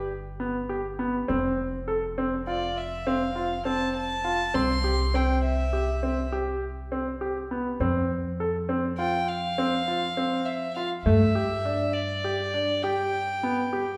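Set in a lopsided 11/8 with a straight feel, this hopeful yet restless contemporary chamber excerpt opens on a clear, slightly worn grand piano playing long-sustaining arpeggios up front, over a woody, thumpy pizzicato upright bass with steel strings. At 2.5 seconds a single bowed violin enters with a rich, floating sul tasto melody, pure and softly attacked, sitting forward in the mix. The trio is heard from further back in a recital hall with a generous reverb tail.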